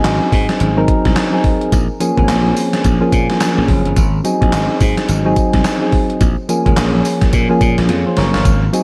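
A gated 80s digital drum machine with a thumpy kick, gated-reverb snare, handclaps, hi-hat and tambourine drives this punchy, slick new jack swing excerpt alongside a bright, growly slap bass and soft, mellow electric-piano-like synth keys with chorus and slapback echo, moving between Ab7 and Bbm7 chords in a big arena sound, before a drum fill at 7.9 seconds.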